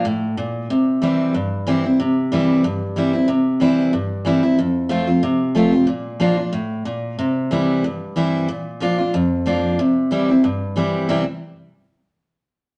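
A brisk 184 BPM in 4/4, with a light swing on the eighth notes, drives this lively bluegrass excerpt cut from a longer piece. A lone picked steel-string acoustic guitar carries it from the start until 11.2 seconds, its full-bodied dreadnought tone sitting up front and ranging from F2 to F4. The playing feels virtuosic, moving through a C mixolydian world of C, F, Bb and back to C after a brief opening before the harmony settles. A shift around 8.5 seconds brings a new passage that moves from Bb to C before a short closing stretch. A wet studio reverb with a 0.9 second decay gives the guitar a sense of space around its warm, picked sound.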